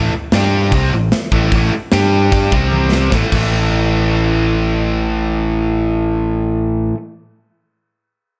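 Set in a big studio with a moderate reverb and a small room's ambience, this short hard rock cut from a longer piece sounds polished and powerful, with a swaggering mood at a straight 149 BPM in 4/4, tuned to A4 = 443 Hz. A biting, double-tracked overdriven guitar sits up front, its picked riff running the full length over power chords moving among G5, A5 and C5. A growly, punchy picked electric bass holds the low end throughout, its amped tone adding weight beneath the guitar. A tight metal drum kit enters at 0.3 seconds, with bright cymbals, a medium-tuned snare, a tight kick and gritty saturation, and drives the opening with crash, hi-hat, kick, snare and toms. A drum fill at 2.7 seconds leads into the second section, and the drums stop at 3.4 seconds, leaving guitar and bass to carry the riff to the close.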